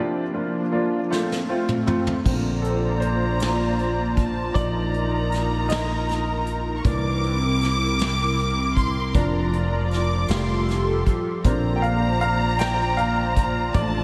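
A clear, woody upright piano leads this swaying, heartfelt pop ballad in Bb major, its audible action noise and long sustain sitting intimately close, shimmering with lush chorus, and taking the solo from 2.3 seconds. The piece moves in a slow six-eight at 52 BPM, counted in dotted quarters, opening with a brief break over an airy, breathy pad whose slow attack, detuned, nasal edge and chorused haze hold sustained chords beneath. A soft brush kit, distant and roomy with a punchy kick and medium-tuned snare, comes in with a fill at 1.1 seconds before settling into the groove. A fretless electric bass then arrives up front, warm, punchy and direct, while a studio violin section adds a smooth, bowed, lush second line high above, its vibrato trailing into a diffuse ambient delay. The chords drift through gentle colors like Bbadd9, Ebsus2/Bb and C7, and the whole mix is soaked in a long hall reverb that gives this cut from a longer piece a dreamy glow.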